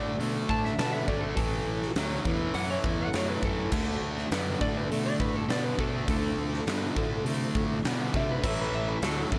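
Blues rock power-trio fare with a southern rock streak, this swaggering, driving cut rides a bright, double-tracked fuzz guitar riff and a dark, round fuzz bass over a D, A and Dm7 progression. A slightly broken-up lead guitar solos throughout, while a very quiet, mellow tonewheel organ with slow rotary speaker and key click holds sustained chords underneath. The huge arena kit enters at 0.2 s with a fat snare, punchy kick and bright cymbals, all set in a light reverb and small room ambience.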